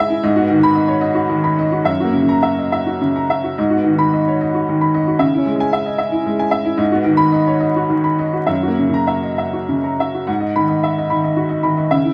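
A clear upright piano carries this short fragment of a longer neoclassical minimalist piece on its own from 0.0 to 12.1 seconds, its woody, slightly detuned and boxy tone sitting up front with a long sustain. The mood is reflective and intimate, set in G# minor in 3/4 with a rubato feel that drifts between 99 and 115 BPM. The piano spans F#2 to B5, moving through G#m7, F#7 and C#m before returning to G#m7. A new section begins at 10.3 seconds on that G#m7 chord. A moderate studio reverb gives the room a short tail, and a layer of vinyl crackle adds a worn, homely texture to the sound.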